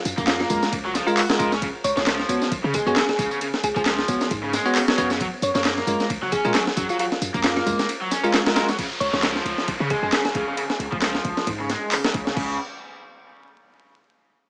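A gritty, pitched-up breakbeat with a thumpy kick and high-tuned snare opens at 0.1 seconds alongside a deep, boomy 808-style bass and tape-warm electronic tambourine and handclaps, setting a funky, playful breaks groove at 134 BPM with a 16th-note swing in Db mixolydian. An overdriven, double-tracked garage guitar riff sits up front with filtering and delay, while a round, detuned thumb-piano-like synth pluck carries the melody through chorus and a telephone-like tone, and a bell-like, clean tine electric piano adds delayed stabs over Gbmaj9 and Db7sus4 chords. At 8.8 seconds the harmony settles on Db5 as a filter sweeps across the guitar and a background downlifter descends, all in a small, crackly room with a lo-fi speaker colour, in a passage cut from a longer piece.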